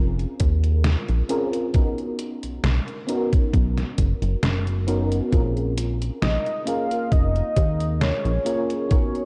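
A thumpy, tape-softened electronic kick sits up front through this hazy, nostalgic vaporwave excerpt at a slow 67 BPM in Bb phrygian, alongside a detuned 8-bit drum machine whose hi-hat and gritty snare sound re-recorded in a large room. A glossy, chorused synth bass with a plucky, saturated edge and a soft, round FM electric piano with a dark chorus and analog delay carry the drifting Bbm9 to Bmaj9 harmony over a lightly swung 16th-note feel. At 6.2 seconds a velvety, detuned synth lead enters high in the mix with tremolo and tape echo, all within a dry, dark production.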